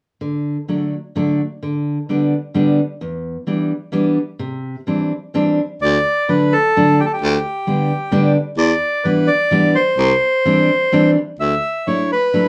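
An edgy, punchy baritone saxophone with vibrato carries the bass line from 5.8 seconds, forceful and up front, beside a reedy, smooth bandoneon that sings the melody in this nostalgic, charming musette waltz excerpt. A fingerpicked dreadnought acoustic guitar, dark and full-bodied with fresh strings, plays the accompaniment alone from 0.2 seconds before the other two join, cycling through D, G/D, Em7 and Cadd9 and landing on Dadd9. The piece sits in a wet studio ambience, heard from further back in the room.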